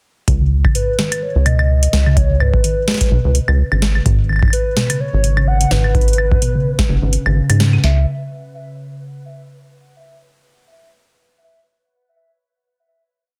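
A dense, heavily limited master with light reverb carries this glitchy, melancholic IDM piece at 127 BPM with a swung 16th-note feel: a booming, overdriven analog drum machine with a deep kick drives a broken kick-and-snare pattern beneath a second overdriven kit of metallic hats, claves and crisp snare in a glitched, ever-changing beat; a rubbery, nasal square bass skips up front in syncopation; a soft, harp-like pluck with chorus repeats a 14-step loop that drifts against the bar through a filter sweep; and from 0.8 seconds a detuned, warbling lead with vibrato and tape echo sings nostalgic arch-shaped motifs as the harmony moves from C#5 to G#m, until the groove gives way to a final chord at 7.8 seconds.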